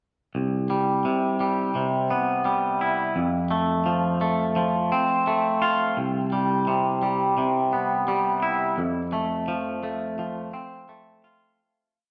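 Cinematic and euphoric, this short post-rock piece features a lone twangy electric guitar, clean and scooped, playing fingered, picked arpeggios up front over a slapback echo. The chords move between Cmaj7 and F, and the guitar ranges from C2 to F4. A lush hall reverb gives the piece a big arena sound before it fades out from 8.8 to 11.6 seconds.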